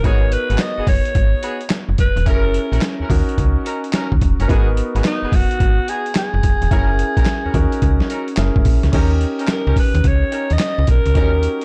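A dark, dry mix frames this bouncy, punchy new jack swing excerpt at 108 BPM with a swung 16th feel, where a gritty, pitched-down sampler-style drum kit with thumpy kick and handclaps sits up front beside a snappy, metallic FM slap bass, while an intimate concert grand piano with audible action noise comps through G#m7, F#7 and D#m7 changes, a tight vintage horn section adds stabs, and a raspy, growling alto saxophone carries the melody from a roomy distance throughout, even as the harmony turns to D#7 at 8.9 seconds.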